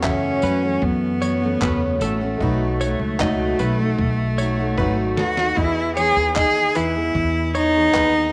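A smooth, bowed cello with vibrato carries the melody up front in this carefree, easy-going acoustic pop excerpt in E major at a relaxed 76 BPM, moving through F#m7, B7 and Emaj7. Underneath, a full-bodied picked steel-string acoustic guitar and a woody pizzicato upright bass hold the harmony, while a clean, direct-recorded electric guitar plays arpeggios coloured by analog chorus and a clear, intimate upright piano sits very quietly with audible action noise. A gritty, sampler-style soul drum kit with a thumpy kick, fat snare, handclaps and tambourine adds a dusty groove and a fill from 4.8 to 5.6 seconds, all in a light studio reverb.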